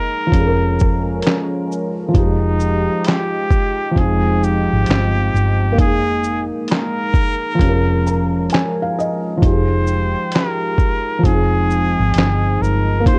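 Melancholic and reflective, this lo-fi hip hop excerpt in F minor moves at 66 BPM with a swung 16th-note feel, its worn, warbling tape sound and small-room ambience coloring the whole recording. A nasal, breathy trumpet with a straight mute carries the melody over a soft, intimate felt-muted upright piano with audible action noise and a cassette tape character, which plays a fill from 7.6 to 9.4 seconds, while a deep, detuned analog pad with chorus sits in the background. From 0.3 seconds, a round, foam-muted electric bass and an up-front, compressed sampler-style kit with a thumpy kick, snare, hi-hat, handclaps and shaker play beneath.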